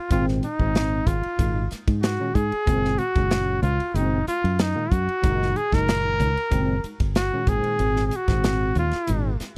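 A soaring, bright electric jazz fusion excerpt at 94 BPM in a straight 4/4 opens with a warm, up-front solo trumpet singing with vibrato and scooped notes, joined at once by a bell-like tine electric piano shimmering with ensemble chorus, a foam-muted fingered electric bass with a punchy attack, and an airy, polished drum kit of hi-hat, kick, snare and ride, all moving through Dbmaj9/Ab, Gbadd9 and Ab9 in a dry, close 1970s-style studio sound.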